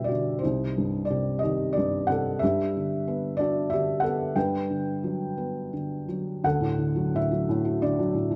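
Classical solo piano in G major, lyrical and relaxed with a sunny mood, moving in a rubato 3/4 at roughly 82-94 BPM through an excerpt from a longer piece. A felt-muted upright piano plays alone from 0.0 to 8.4 seconds, ranging from C2 to G5 with a soft, mellow, intimate tone from thick felt, audible action noise and an up-front presence. The harmony passes from Cm through Gadd9 and Gmaj7 before shifting to Dadd9 at 6.4 seconds as a new section begins, all wrapped in light reverb and a dark production.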